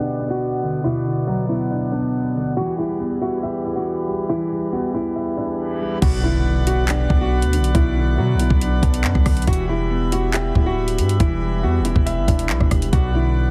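A punchy, heavy 808-style bass and an electronic drill kit with knocking kick, metallic hats, handclaps, rim clicks and crash cymbal arrive at 6.0 seconds with a very quiet impact, transforming a filter-swept opening of low-passed nylon-string guitar melody with thumb-plucked finger squeak, a dark, intimate grand piano with audible action noise, and reedy, breathing pedal harmonium chords into a menacing, ominous half-time drill hip hop cut in B minor at 139 BPM, heard through a heavily compressed radio sound in a small room.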